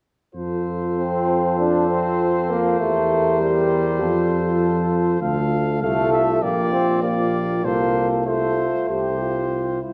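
Classical brass quintet music in F major at 98 BPM, taken with a rubato feel in 4/4 and noble, triumphant in mood, cut from a longer piece. A clear trumpet carries the melody with light vibrato above a distant flugelhorn second line and a soft-attacked French horn in the background, while a bright, vintage-toned trombone joins at 1.0 s and a mellow tuba sits up front on the bass. A wet recital hall reverb surrounds the ensemble as the harmony moves through F, C7/E, Dm and Gm7/Bb before settling on C5.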